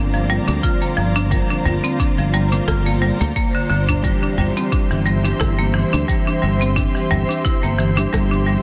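A buzzing marimba struck with hard mallets sits up front, its woody, bright arpeggios trailed by tape echo, over a growly, tube-saturated fretless electric bass and a sidechain-pumped ethereal pad with chorus and built-in reverb, all moving between Gm7 and C/G in G dorian. This short, earthy organic downtempo excerpt runs at 88 BPM with a gentle swing, as an afro-pop kit of metallic hi-hats, rim clicks and shaker comes in at 0.1 s and an electronic kick follows at 0.6 s, both in a small room. A dark, clean electric guitar with chorus and tape echo murmurs in the background, and a deep, dry udu joins from 1.6 s to 7.3 s, all under a dense, heavily limited master with light reverb.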